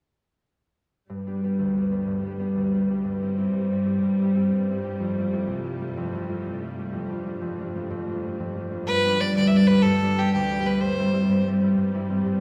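Cheerful and rollicking, this Celtic folk excerpt in G mixolydian moves at 124 BPM in a straight 12/8, with a ringing, thumb-plucked concert harp up front and a rich, smooth string section holding an even bowed drone beneath it from 1.1 seconds. The harp carries the chords from G through C/G, Fmaj7 and Dm/F, and at 8.9 seconds a clear, biting fiddle with light vibrato enters up front with an intense melody that runs until 11.5 seconds. A wet recital hall reverb gives the ensemble a spacious glow.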